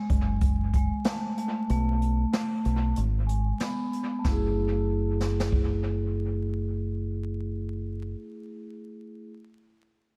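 Gritty and tough, this fragment of boom-bap hip-hop swings on brushed jazz drums with a boomy kick and a medium-tuned snare, captured naturally in a small room and touched with analog delay. A dark, round fingered electric bass sits up front beneath a ringing, metallic vibraphone struck with medium hard mallets, its tone colored by cassette tape and a filter sweep through the first 4.2 seconds, while the kick drops out between 1.7 and 4.2 seconds. The echo-heavy mix carries studio reverb and vinyl crackle, and the drums stop at 5.7 seconds, leaving bass and vibraphone.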